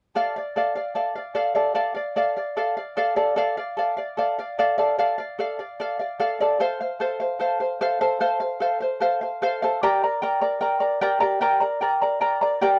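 A mellow, shimmering charango sits up front in this earthy, melancholic Andean folk excerpt, fingerpicked on its double strings with some octave-doubled courses as it plays accompaniment from 0.2 to 12.8 seconds. At a straight 75 BPM in D minor, it moves from Dm to F at 6.6 seconds and Gm at 9.8 seconds. The sound is dry and close, like a 1970s studio recording, with light reverb.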